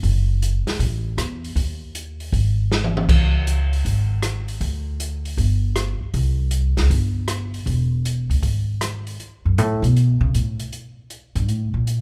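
Lightly reverberant and close, this swinging, cool jazz piano trio excerpt moves at 157 BPM in 4/4 with a swung eighth-note feel. The woody, thumpy pizzicato upright bass sits up front beside an acoustic drum kit in a small room, with dark cymbals, a medium-tuned snare, a boomy kick and a rolled-off top. A drum fill arrives at 2.7 seconds, and from 9.2 seconds the bass takes a solo over the kit.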